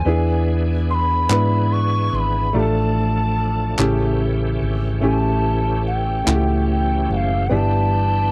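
A round, dark hollow-body electric bass sits up front in this slow, fervent and solemn gospel passage in 6/8, cut from a longer piece, as a reedy bamboo bansuri with soft attack, vibrato and a slapback echo carries the melody. A clear, natural grand piano accompanies, while a bright tonewheel organ shouts sustained chords through fast rotary speaker, light overdrive and chorus vibrato, moving from E7 through Dm/A and A7 to Em7/G. Hollow, human group handclaps join from 1.3 to 6.7 seconds, and the whole take has the dry, close sound of a 1970s-style studio.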